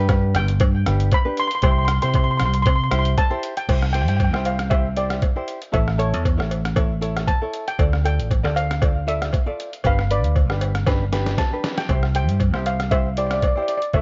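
Heard through dry, worn cassette tape with warbly pitch drift and a dull top end, this carefree, bouncy calypso excerpt in C major moves at 117 BPM with a light swing, as a fingerpicked acoustic ukulele and a growly, amped fingered electric bass sit beside an up-front, compressed, pitched-down trip hop sampler-style drum kit with a thumpy kick and muffled tone, a close metallic cowbell ticks along, and from 0.4 s a bright, shimmering lead steel pan struck with hard rubber sticks carries the melody through tape echo, with a drum fill at 10.9 s.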